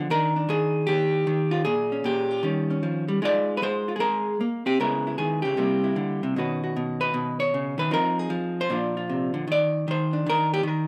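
Close, detailed microphones and light reverb frame this short solo jazz excerpt, cut from a longer piece, with a vintage hollow-body electric guitar up front, its clean, picked tone dark as it swings through a relaxed, sophisticated chord sequence from Ebmaj7 through Ab69, Dbm9 and C7. Ranging from Bb2 to D5, the guitar carries the whole passage alone from the start until it breaks off at 10.9 seconds on an Eb5 chord.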